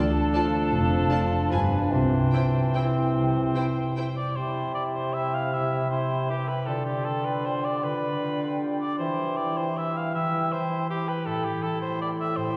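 In a rubato triple metre, this sweeping, festive classical passage, cut from a longer piece, moves with an elastic lilt. A bright, ringing harp sits up front, spinning thumb-plucked arpeggios from start to finish. In the opening seconds a dark French horn section holds sustained chords alongside the strings: a lush violin section carries the melody in the background, with a very quiet second violin line, smooth violas in accompaniment, and cellos and an expressive double bass section on the bass. The strings and horns fall away by about 4.2 s, leaving the woodwinds and harp to continue. A clear, vintage clarinet, a mellow, hollow silver flute and a warm, soft-attacked cor anglais play second lines, while a distant, roomy bassoon accompanies from 0.3 s onward. The harmony drifts from D minor through a G7b9 to C and settles toward Am7, all heard from further back in a wet concert hall.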